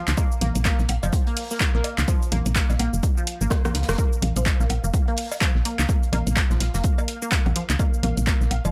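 Minimal techno at 126 BPM in Bb minor, cool and clinical, cut from a longer piece, where an overdriven electronic kick and a woody, round FM bass with sidechain pumping sit up front, joined by an overdriven analog drum machine of handclaps, hi-hat, rim click and shaker, a very quiet acoustic kit of hi-hat and snare, background cowbell, congas and woodblock with analog delay, a squelchy, resonant blip pluck riff between F3 and Bb3 through phaser and tape echo, and a pulsing gated texture with chorus in the background, all in a dry, gritty hardware mix with a drum fill at 3.5 seconds.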